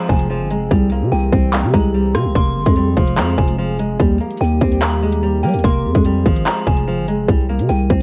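Drill hip hop with an ominous, cold half-time feel, where a fingerpicked classical nylon-string guitar carries the filtered, echoing melody over a warbling, dark tape-like pad and a tinkling FM synth bell line, while a growling, buzzy 808-style bass and an overdriven drill kit of hard-clipped kick, handclaps, rim clicks and metallic hats (dropping out from 0.7 to 2.4 seconds) sit up front, all wrapped in a cassette home-recording sound and vinyl crackle with a dulled top end.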